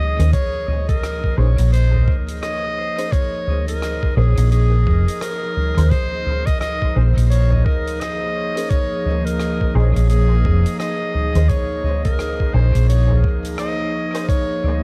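Ambient dub at 86 BPM in Bb minor, hazy and spacious, resting on a single Bbm11 chord with a swung sixteenth feel in this short excerpt cut from a longer piece. A clear, present clarinet sings a classical-style solo melody through dub echo over a warbling, nostalgic tape-like pad with chorus and its own reverb, while a very quiet filtered dub chord stab adds muted, detuned sawtooth plucks from 0.2 seconds. Underneath, a round, up-front hollow-body fingered electric bass sits beside a muffled, thumpy sampled kick and a soft-mallet acoustic kit of hi-hat, rim click and toms, all within a dark, warm studio reverb.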